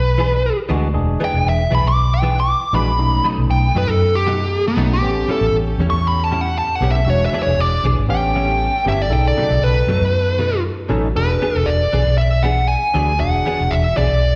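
A laid-back 118 BPM blues number in 4/4 with a light sixteenth-note swing, this soulful clip from a longer piece features a dark, smooth, overdriven lead guitar soloing over E7, B7 and A7 changes until 11.2 seconds, backed by a round, punchy, foam-muted fingered electric bass, clean, compressed direct-recorded guitar stabs with ensemble chorus and slapback echo, a barky tine electric piano through a combo amp, and soft, floating bowed strings in the background from 3.0 to 11.1 seconds, all heard through a live venue's PA in recital-hall reverb.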